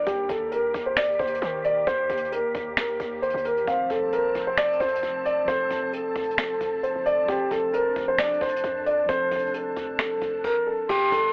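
A brooding, melancholic half-time hip hop and trap excerpt in which a dark, boxy concert grand piano carries the melody up front with audible action noise, over a glassy FM pad, a deep 808-style bass sitting in the background and a polished jazz brush drum kit with a boomy kick, high-tuned snare and finger snaps, while muted felt-like synth keys join at 3.6 seconds and a distant, vibrato-tinged concert flute appears at 10.9 seconds, the mix carrying a telephone-like tone and light reverb.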